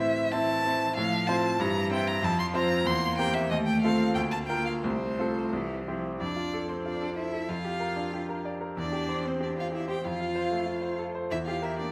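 An expressive solo violin carries the melody up front with vibrato, soft attacks and sliding portamento, while a close, bowed cello shares the same rich, singing character on a second line beneath it. A bright, brilliant grand piano, also up front, supplies the accompaniment in this cheerful, spirited classical-period movement for piano trio, which is cut from a longer piece and shaped with a flexible, rubato feel in 2/4. All three play throughout in a wet recital hall, and the chords move from A minor toward F and close on a diminished chord near 11.3 seconds.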